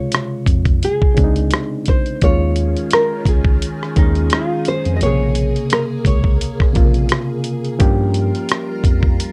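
A hazy, melancholic lo-fi hip hop fragment, cut from a longer piece, moves with a lightly swung 16th-note feel. A fingerpicked nylon-string guitar carries the melody until 7.1 seconds, its full-bodied classical tone softened by a low-pass filter, tape echo and plate reverb, with audible finger squeak. Beneath it, a reedy overdriven electric piano plays gritty accompaniment through a combo amp with a cassette-tape haze, while a mellow, clean tine electric piano supplies the bass line. A dusty, compressed sampler-style kit sits up front with hi-hat, rim click and a thumpy kick. From 2.5 seconds a faint phased string machine adds swirling, warbling sustained chords with ensemble chorus and a slow attack, over a progression drifting from Dbmaj7 through Eb9sus4 and Bbm9 to Gm7b5, all in a light reverb.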